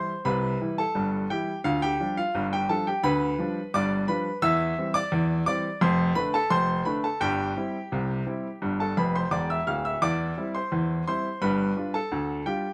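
A clear, polished baby grand piano sits up front in a moderate studio reverb, playing solo throughout this lively, playful ragtime passage cut from a longer piece. At 86 BPM in a straight 2/4 feel, it moves through C major, with chords running from C to G7, C/E, Dm/F, C/G and G, and its range stretches from D1 to F6, tuned to A4 = 438 Hz. A brief grand piano fill arrives at 9.0 seconds before the harmony returns to C/E and closes on G7.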